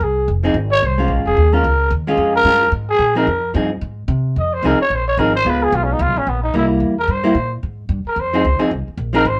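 Cool and smoky, this brief cut from a longer small-group swing and bop piece swings in 4/4, with a growling trumpet taking a raspy, breathy solo that sounds gritty and roomy yet sits up front. Beneath it, a woody pizzicato upright bass and a dark, clean hollow-body electric guitar, picked from 0.4 seconds, move through Fm7, Db7 and C7 before settling back on Fm7. The trio plays live together in one room with light reverb.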